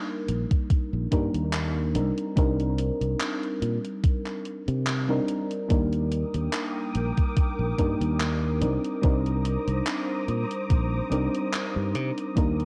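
Vaporwave at a slow 72 BPM in 4/4, with a light swing on the sixteenths, this faded, woozy fragment is cut from a longer piece. A mellow FM electric piano opens at 0.0 seconds, its round, warbling tone sitting up front and thickened by lush chorus and analog delay. It moves between Ebmaj7 and Cm9. A growly, bright fingered electric bass joins almost at once, alongside a thumpy, overdriven electronic kick that leads the mix and a gated 80s drum machine supplying handclaps and hi-hat through gated reverb and overdrive. At 5.7 seconds a soft string machine fades in with silky, evolving sustained chords, spread by ensemble chorus high above the keys. Light reverb and a cassette-tape sheen give the whole recording its hazy, worn character.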